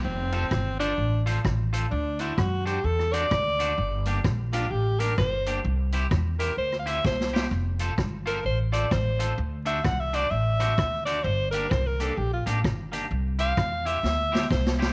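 A bright, present alto saxophone with light vibrato and a soft subtone carries the melody of this bouncy, cheerful ska excerpt from the first moment, over a woody pizzicato upright bass, while a twangy, slightly broken-up picked electric guitar steeped in spring reverb, sitting further back, and a street-band drum kit with a boomy kick and rolled-off top both join at 0.3 seconds. The swung groove cycles twice through F, D7, Gm and C, with drum fills at 7.0 and 14.0 seconds. Light small-room ambience and vinyl crackle give the sound an intimate, dusty character.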